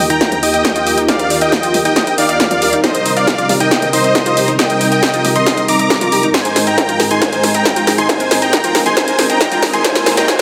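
Uplifting trance at 137 BPM, euphoric and soaring, built as one long build-up with a drum fill and a filter sweep on the synth pluck running throughout, while the chords move from Ebadd9 through Cm7 and Abadd9 to Bb7sus4. Up front, a huge, thick supersaw carries the melody with vintage 12-bit grit, vibrato, delay and sidechain pumping, over a punchy, overdriven analog drum machine playing hi-hat, snare and toms. Beneath sit intimate bowed chamber strings holding sustained chords, a lush, bright unison pluck arpeggiating with delay, a distorted electronic kick in the background, and a very quiet riser entering at 8.1 s, all in a moderate concert hall reverb.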